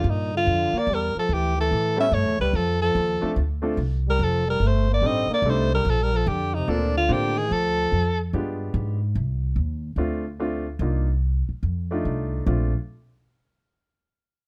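Warm and sophisticated, this excerpt of small-group swing and bop moves at 145 BPM in Bb major with a swung 4/4 feel, led by a breathy, clear alto saxophone melody with vibrato and plate reverb, while a punchy, forceful trombone adds a second line with scooped notes. Beneath them, a thumpy, dark pizzicato upright bass with a woody tone sits up front, and a short-sustain upright piano enters at 2.0 seconds with accompaniment. The horns stop at 8.2 seconds, leaving bass and piano to carry the harmony through changes such as G7b9 and Cm11 before settling on Bbmaj7.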